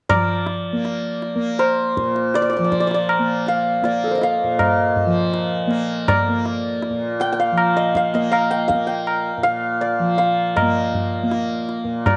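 This Hindustani classical excerpt in raga bilaval, centred on Bb, has a serene, radiant mood at a steady 80 BPM in a straight 4/4. From 0.1 seconds to the end at 12.2 seconds, a bright, hammered santur carries the melody between A4 and G5, its shimmering tone sitting up front. Beneath it, an acoustic tanpura holds a mellow, softly plucked drone between Bb2 and Bb3, with a buzzing edge that stays close in the mix. A high-tuned tabla provides the percussion, its ringing strokes close and dry. The three parts play together throughout within light reverb and a small room ambience, in what sounds like a section cut from a longer performance.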